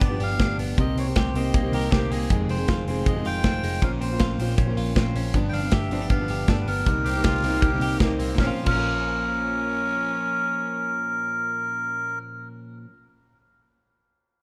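Bittersweet and restless, this jangly indie pop excerpt moves at a brisk 158 BPM in a straight 4/4, set in Bb dorian over chords such as G7, Cm7, Fm7 and Bbmadd9. A reedy, nasal melodica carries the melody up front, its breathy tone sitting over a full-bodied, fingerpicked jumbo steel-string acoustic guitar with fresh strings and a clean, bright, twangy electric guitar playing compressed arpeggios. Underneath, a vintage foam-muted electric bass gives a round, dark, amped low end, while a dark, smooth acoustic drum kit with a tight kick and medium-tuned snare sits close in a small room and drops out at 8.8 seconds. A raspy, growling trumpet with light vibrato adds a brief second line at 1.7 seconds and returns from 7.0 seconds, its gritty edge tucked low in the mix. Light reverb gives the ensemble a touch of space as the passage shifts into a new section at 8.4 seconds.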